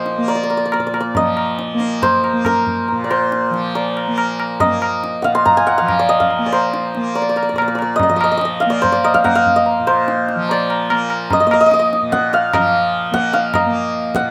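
Devotional and radiant, this Hindustani classical piece in Bb major moves in a straight 4/4 that speeds up across its 14.3 seconds, climbing from 137 toward 150 BPM. The santur carries the melody up front, its hammered strings ringing with a shimmering tone and a slapback echo, while the tanpura sustains a bright, buzzing drone beneath and the low-tuned tabla enters at 0.1 seconds with a compressed, saturated tone and short ring. Cut from a longer performance, it was recorded outdoors with little reverb, giving the acoustic instruments a dry presence.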